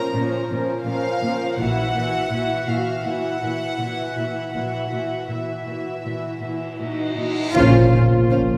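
A wet scoring-stage reverb places this ominous, uneasy suspense cue further back in the room, where soft-attacked sul tasto strings hover over Bbmadd9 and Esus2/Bb harmony at 81 BPM, cut from a longer piece. Pure, floating violins carry the melody over a darker, intimate second violin line, woody, lush violas and up-front cellos, while the double basses join at 1.6 s on a low Bb. An electronic reverse cymbal from 6.9 s leads into an impact and band accent at 7.6 s. Just before them, at 7.5 s, a bright trombone section and mellow French horns add sustained chords in the background.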